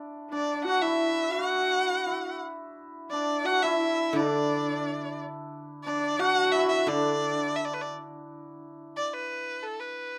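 Moderate studio reverb gives this short cut from a longer Chinese traditional chamber piece an intimate sense of space, with a festive yet graceful mood. Set at 87 BPM in 2/4 but played with a free, rubato feel in a D gong mode, it opens on the shimmering, ringing strokes of the hammered dulcimer as a second line. From 0.3 seconds a single bowed erhu carries the melody up front, its rich tone shaped by vibrato, portamento and a smooth, even line. Alongside it, a lone horsehead fiddle adds a clear, focused yet husky second line with vibrato and portamento of its own, bowed on horsehair strings until 7.6 seconds. At 4.1 seconds the guzheng enters with a low, silvery accompaniment plucked with fingerpicks, giving the texture a gently resonant footing before the passage moves into a new section near its close.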